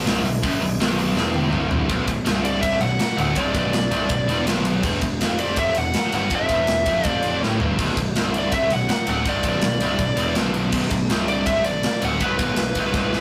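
A rough rehearsal-room recording with warm saturation and moderate reverb carries this dark, heavy metal excerpt at 163 BPM in 4/4, where a scooped, double-tracked high-gain guitar riff and a growly fuzz-driven picked bass open over B5, a tight, up-front drum kit with bright cymbals rolls through fills, and a dark high-gain lead guitar melody enters at 2.4 seconds as the harmony moves through Bm and Fmaj7sus2/E.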